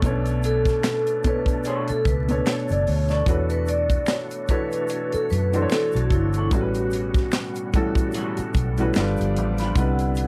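A dark, warm production with light reverb and a bed of vinyl crackle frames this introspective, smooth slice of neo-soul R&B, cut from a longer piece and carried by a swung sixteenth-note feel. A tight funk drum kit sits up front with a dry, polished sound, a high-tuned snare, a tight kick, hi-hat and handclaps, joined by a foam-muted, round vintage electric bass and a woody, boxy upright piano with long sustain. Further back, a reedy, bright tonewheel organ holds sustained chords through a fast rotary speaker and chorus vibrato, while a quiet egg shaker and finger snaps add a close, dry pulse. From 0.5 seconds a soft-mallet vibraphone takes the solo melody, ringing and mellow with motor vibrato and plate reverb. An electric guitar through a small old amp, slightly broken-up and twangy with a phaser, plays a second line from 1.7 to 9.7 seconds as the harmony moves through Bm9, E13sus4, A13 and G7 before landing on Cmaj9.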